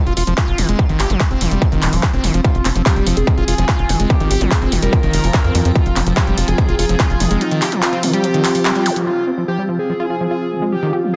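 A distorted, overdriven electronic kick sits up front in this alien, intense psychedelic trance excerpt at 145 BPM in F minor, with a straight 4/4 feel. It arrives just after a layered, overdriven techno kit of handclaps and hi-hat and a tight, punchy sequencer bass with a dark, plucky sawtooth and square-wave tone that drives the low end until about 7.4 seconds. Above it, a squelchy, gritty acid bass riff with a resonant filter sweep runs through distortion and delay. A screaming, guitar-like synth lead enters at 2.4 seconds, bright and sustained with vibrato, phaser and delay. Further back, a granular cloud pad offers a blurred, full-bodied shimmer, an overtone-sweeping drone adds wave-folded sustained chords with chorus and a moving notch, and a brief electronic zap flickers near 9 seconds. The pad, drone, acid bass and lead all breathe with sidechain pumping inside a dense, heavily limited master with light digital ambience, and after a band accent the track moves into a new section at 9.1 seconds.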